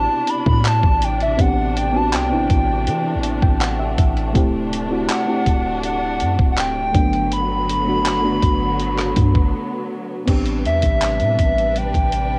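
Contemporary R&B with a moody, late-night feel, this short cut moves through Am11, D7sus4 and Gmaj7 in a straight 4/4. A hollow, woody synth lead with vibrato and chorus carries the melody, its tone colored by cassette tape. Beneath it, a mellow FM electric piano adds round, warbling chords and a brief fill from 2.9 to 4.4 seconds, while a distant, lush string section holds sustained chords with a sidechain pump. A deep, boomy 808-style bass anchors the low end, and a gritty, compressed sampler-style drum kit sits up front with a thumpy kick, rim click, hi-hat, handclaps and crash cymbal, leading into a break at 9.5 seconds. The dry, home-recorded cassette sound gives the track a dusty character.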